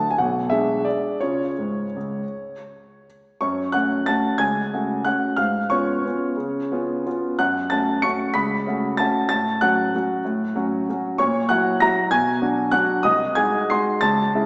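Bittersweet and nostalgic, this classical piano waltz in F# minor moves in 3/4 with a rubato feel between 156 and 204 BPM, cut from a longer piece. A solo concert grand sits up front with a warm, intimate, natural tone, deep bass and audible action noise, ranging from B1 to C#7, and after a brief opening a new section begins at 3.4 seconds, settling on F#m before drifting through C#7/G#, F#7/A# and Bm to close on G#7/B#. Wet concert hall reverb surrounds the playing, though the overall sound has a small-speaker quality.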